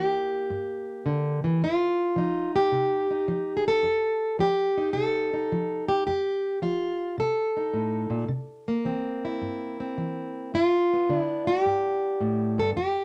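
Laid-back and rollicking, this acoustic country blues excerpt swings along at 108 BPM in 4/4, carried by a lone fingerpicked steel-string acoustic guitar with a boxy, parlour character, sitting up front in light reverb. The guitar moves from a rootless C7 to F7 at 1.6 seconds, returns to C7 at 8.3 seconds and reaches G7 at 10.5 seconds, ranging from F2 to A4 over its 13-second span.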